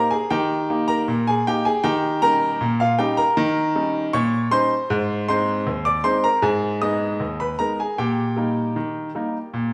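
A jaunty ragtime strain in 2/4 at 78 BPM with a straight feel opens this brief, lively piano piece in Eb major, cut from a longer performance. A bright concert grand plays alone across the full 9.7 seconds, ranging from Eb2 up to Eb6, its brilliant treble ringing over a deep bass. The instrument sits up front with a natural tone, heard inside a wet stone room whose reverb lingers for about 1.3 seconds, as if played live in that space. The harmony moves from Eb to Eb7, then to Ab at 4.9 seconds and a darker Abm before settling on Eb/Bb at 8.0 seconds. The result is a short, sparkling opening section full of old-time bounce.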